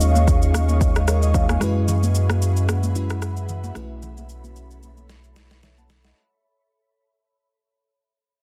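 A dense, heavily limited mix with light reverb carries this deep, soulful amapiano excerpt at 112 BPM with a swung 16th feel, where an overdriven deep house drum kit with a deep kick and snare, rim click and shaker sits up front beside a thick, saturated sub bass, while a sparkling, bell-like FM electric piano with chorus and plate reverb accompanies an ethereal, airy pad with detuned sawtooth unison, a moving notch and sidechain pumping that sustains Eb9sus4, Gb9sus4 and B9sus4 chords. Damped, high-tuned congas tap in the background from 0.2 seconds, and a drum fill arrives at 5.1 seconds as the whole fragment fades out.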